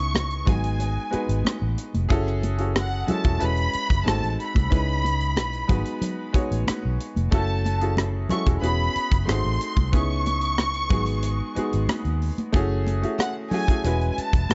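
A bowed violin section carries the melody from the first moment over a bright, slightly worn grand piano and a round, foam-muted electric bass sitting up front, giving this silky, smooth slice of lush 1970s-style soul its unhurried, straight 4/4 pulse. Soft-handed, high-tuned congas slip in quietly in the background, and a tight funk drum kit with hi-hat, kick and rim click joins at 0.2 seconds, its snug small-room sound placed close to the listener. The violins' vibrato and focused tone float over a looping progression of lush minor-seventh and ninth chords, with studio reverb lending the whole a polished, rounded finish.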